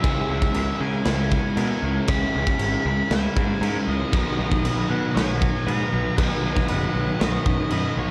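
A dark, small-room production frames this wistful, blissful shoegaze and dream pop rock passage in B major at 117 BPM, where an up-front acoustic drum kit with a punchy kick and rolled-off top and a round, overdriven fuzz bass sit under a distorted octave-fuzz lead guitar melody with tape echo, while a biting overdriven guitar with lush chorus, a hollow-body overdriven guitar with reverse reverb and a bright, twangy clean guitar playing arpeggios stay in the background, and a clear woodwind section with vibrato adds sustained chords from 4.1 s as the harmony moves from C#m7 to Bmaj7.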